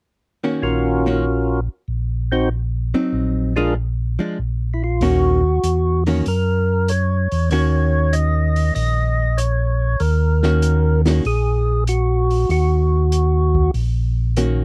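Soulful and smoky, this soul jazz organ trio excerpt moves at 96 BPM in 4/4 with a swung eighth-note feel, settling in Eb dorian before shifting to Eb minor at 5.0 seconds. A clean, picked hollow-body jazz guitar comps up front from 0.4 seconds, its compressed tone sitting close in the mix. At 0.6 seconds two tonewheel organ parts enter: a fat, lightly overdriven percussive organ carries the melody with third harmonic percussion and a slow rotary speaker, while a mellow, round organ voice handles the bass line with chorus vibrato and its own slow rotary swirl. The acoustic drum kit joins at 5.0 seconds, sitting low in the mix with a boomy kick, a medium-tuned snare and hi-hat, its top end rolled off to a dark, smooth sound. The harmony moves from Ebm7 through Ab7 and Bb7 before returning to Ebm7, all captured in a dry, close 1970s-style studio sound with little reverb.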